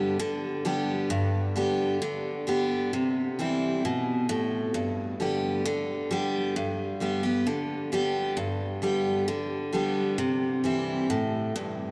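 Nostalgic and easygoing, this brief country excerpt in G major at 132 BPM features a lone picked steel-string acoustic guitar, bright and full-bodied with fresh strings and audible finger squeak, sitting up front yet bathed in a long cathedral reverb that fills a vast, echoing space as the chords move between G and C.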